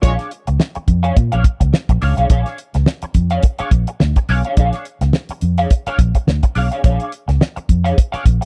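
A damped 70s drum kit with a fat snare and tight kick sits up front in this gritty, strutting funk excerpt at 106 BPM with a 16th-note swing, playing together from the start with a dark, round, foam-muted vintage fingered electric bass and a slightly broken-up, compressed electric guitar through wah and ensemble chorus, all riding a single Bb7#9 chord in a dry, close 1970s-style small-room sound.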